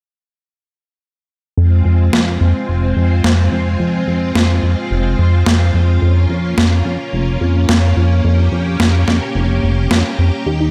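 Synthwave with a moody, driving feel, cut from a longer piece, where a lush string machine ensemble holds sustained chords over a glossy, chorused synth bass that sits up front and carries a filter sweep, both entering at 1.6 seconds as the harmony moves from F minor to B-flat minor over F. An overdriven, sampler-style electronic snare joins at 2.1 seconds, treated with gated reverb. Near the close, at 10.5 seconds, a soft, round pluck adds a brief, dark arpeggio bathed in chorus.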